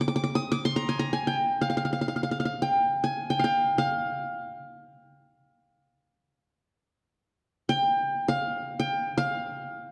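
Hypnotic and longing, this short fragment of a Turkish makam ensemble piece in free time, tuned to A4 = 444 Hz, features a solo qanun up front from 0.0 to 9.9 seconds, its plectrum-plucked triple strings sounding bright-edged in a high register from F5 to Eb6, set within a dark production and a wet concert hall reverb with a 2.1-second decay.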